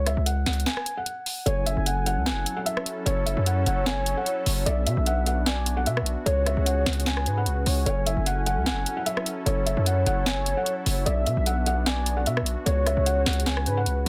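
A dense, heavily limited modern mix with light reverb and a digital ambience carries this melancholic, eerie half-time trap excerpt. A felt-muted upright piano, soft and dark with audible action noise under a low-pass filter, plays the melody over a heavy, saturated 808-style bass with distortion, while an up-front trap kit of bright hats, rim clicks and a sharp snare enters at 0.1 seconds, ahead of a break at 0.7 seconds. At 1.5 seconds a velvety, detuned sawtooth synth lead with chorus, vibrato, portamento and digital delay adds a second line, and a sweeping, resonant sawtooth pad with chorus holds sustained chords that move between F#m7, Bm and C#sus4.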